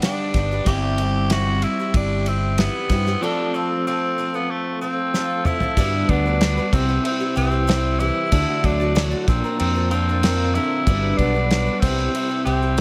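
An echo-heavy mix with light reverb and small room ambience frames this jangly, hopeful excerpt of folk rock and heartland rock in a straight 4/4. A raspy, gritty tenor saxophone carries the melody up front with analog delay, over a shimmering, octave-doubled picked twelve-string acoustic guitar with audible finger squeak, dressed in analog chorus and delay. A slightly broken-up electric guitar through a small old amp plays a riff with its own analog delay, while a very quiet tonewheel organ holds sustained chords through a slow rotary speaker. A round, amped fingered electric bass enters at 0.3 seconds, and a reedy electric piano with fast tremolo joins faintly at 0.7 seconds. A damped 70s drum kit with dark cymbals and a tight kick plays a fill from 5.1 to 5.8 seconds, leading into a new section where the chords move through Gmaj7, Dadd9 and Bbadd9.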